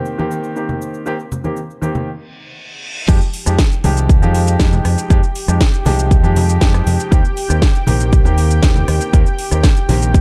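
A straight 4/4 nu-disco groove at 119 BPM in F minor, groovy and sleek, opens on a clear grand piano with slapback echo and a lush, detuned sawtooth pad with chorus, both pumping against the sidechain, over soft-handed cabasa and congas sitting in the background. A reverse cymbal fills a short break at 2.3 seconds before the drop at 3.1 seconds brings in a punchy, up-front electronic kick, a house kit with cracking snare and metallic hats, and a bright fingered electric bass through an envelope filter, as the harmony moves from Eb6 to Fm9 and back. The production is dark and warm with little reverb, and the recording is cut from a longer piece.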